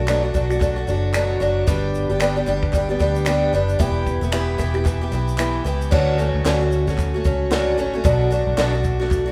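Carefree and easy-going, this short acoustic pop excerpt in D major moves at 113 BPM with a swung sixteenth-note feel, as an up-front, shimmering twelve-string acoustic guitar carries the chords from Bm7 through G and Em to Dmaj7. Beneath it, a dark, round, foam-muted electric bass and a compact cocktail kit with a punchy kick, high-tuned snare, shaker, finger snaps and crash sit a little back, while a very quiet, crisp group handclap adds texture from 0.1 seconds. The whole piece is bathed in the lush, lingering reverb of a recital hall, giving the small band a spacious, churchlike glow.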